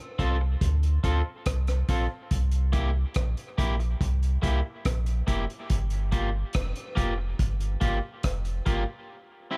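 Dub reggae at 71 BPM in straight 4/4, this short cut from a longer piece has a deep, spacious mood. A round, sine-like sub bass sits up front, moving between F1 and D2 with a fast attack and mellow sustain. The breakbeat kit is crunchy and saturated, with a tight kick, hi-hat and rim click sounding gritty and dark through a rolled-off top in a small room. Quieter in the mix, a twangy, picked electric guitar at the edge of break-up plays accompaniment from Bb3 to A4, trailed by dub echo. The harmony moves from Dm7 to C7 at 2.3 seconds and Gm7 at 5.7 seconds, and after the bass and drums stop at 8.9 seconds, the guitar carries on alone until 9.6 seconds. The sound is dry, with little reverb.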